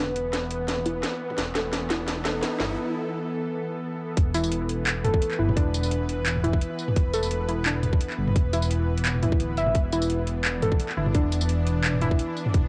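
A dark, rumbling detuned saw bass sits up front in this heavy, cinematic half-time drum and bass passage at 172 BPM, with a slight swing on the 16ths, cut from a longer piece. A tense, nasal, string-like drone holds sustained chords with vibrato, built-in reverb and sidechain pumping. A warbling, dusty lo-fi pluck spins chorused arpeggios through an analog delay and a filter sweep. Over the opening build-up, the electronic kit plays a fill with cracking snare, metallic hats, claps, tambourine and toms, and a faint riser hovers in the background. After a short break at 2.8 seconds, a tight electronic kick enters with the drop at 4.2 seconds, and both drum parts carry a small-room, cassette-tape grit.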